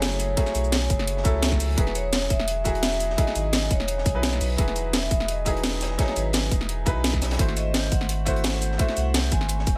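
A ringing, metallic vibraphone carries the melody with airy tape echo in this lush, soulful liquid drum and bass passage at 171 BPM, while a brilliant concert grand piano adds chords moving from F#m9 to Emaj9 and onto G#7b9b13 at 7.4 seconds. A deep, thick sub bass sits up front with a saturated edge. The drums combine a gritty, rolled-off breakbeat kit in the background, a produced kit with a cracking snare, bright hats and cabasa, and a tight electronic kick entering at 0.4 seconds, the last two both overdriven.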